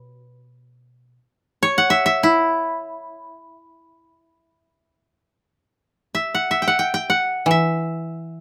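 Two kotos open together in free time, a melody line from E4 to G5 over a low accompaniment from B2 to E3 in the E kumoi scale. The still, meditative Japanese chamber music comes from an excerpt of a longer piece, and the melody koto carries on alone until the lower koto returns at 7.5 seconds for the close. Both instruments are fingerpicked, dry and woody, sitting up front under close, detailed microphones with a light touch of reverb.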